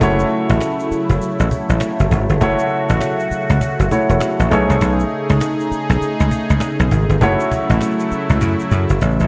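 An R&B cut in the new jack swing style, this short excerpt moves at 100 BPM in 4/4 with a swung sixteenth-note feel, sitting in F# dorian and coming across as punchy and slick. A dry thumbed slap bass leads the mix, electric, bright and foam-muted, standing up front with a direct, punchy edge. Beside it, a phased analog pad holds sustained sawtooth chords that swirl and evolve through phaser and chorus, its soft attack and detuned shimmer also placed forward. A warm, polished baby grand piano supplies present accompaniment touched by a slapback echo, while a woody cajon with faint snares sits in the background and a grainy, bright, close egg shaker adds a top layer. The harmony moves from F#m7 to B13 at 4.5 seconds and back to F#m7 at 7.2 seconds, with a drum fill at 9.0 seconds, all set in a lush hall reverb that gives the piece a big arena sound.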